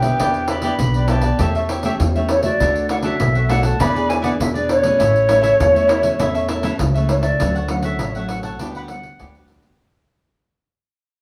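A straight 4/4 samba and choro groove drives this joyful, sunny passage, with a jingly pandeiro and a woody, thumpy pizzicato upright bass that sits up front. An airy, distant concert flute carries the tongued, expressive melody with vibrato over a crisp, picked cavaquinho and a deep, fingerpicked classical nylon-string guitar, the band playing live together in a small room under a wet studio reverb. Cut from a longer piece, it begins fading out at 7.4 s as the harmony settles onto Dmaj7.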